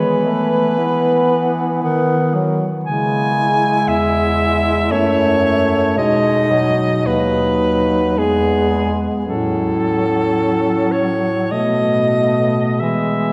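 Classical and lyrical, this serene excerpt from a longer piece for single-reed quartet moves in an unhurried, rubato 3/4 at 45-60 BPM in E major. The warm soprano saxophone sings the melody up front with classical vibrato, while the alto saxophone adds a smooth-topped second line further back, the mellow tenor saxophone supplies a distant, roomy accompaniment and the clear bass clarinet carries the bass close and present. A wet cathedral reverb with a 4.2-second tail fills the church-like space as the harmony settles back to E by 12.8 seconds.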